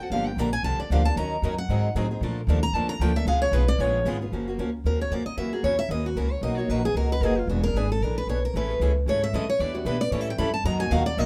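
Swinging and charming, this brisk cut from a longer acoustic string swing piece rides a lightly swung eighth-note feel. A bright concert steel-string guitar with fresh strings carries the melody up front as a solo running through both passes of the tune, over a boxy parlour guitar keeping picked accompaniment throughout. A second accompanying guitar, a full-bodied dreadnought, plays in the backing from the start, drops out at 4.2 seconds and returns at 8.6 seconds. Underneath, a woody, thumpy upright bass with gut strings plays pizzicato and sits up front with a dark low end. The harmony moves restlessly through sevenths and major sevenths, from Gm7 through Bbmaj7 and F#maj7 to a closing Bmaj7, while a moderate small-room reverb gives the group an intimate, close setting.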